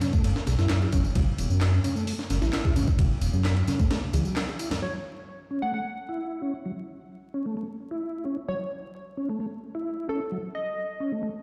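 A gritty, pitched-up sampler-style drum kit with a thumpy kick and high-tuned snare opens this playful, funky breakbeat at 131 BPM, cut from a longer piece, alongside tape-warm layered tambourine and handclaps, ringing congas and bongos in the background, and a mellow, flute-like tonewheel organ riff with key click, chorus vibrato, overdrive and delay on an F#m7 chord. A dark, rumbling detuned saw bass enters up front at 0.2 seconds. The bass, drums and percussion drop out by 4.8 seconds, where a catchy, punchy unison lead with vibrato, a filter sweep and an old record sound carries the melody over the organ until 11.0 seconds, and a lush hall reverb, stone-room ambience like a big sound system in a bare room, and vinyl crackle color the whole track.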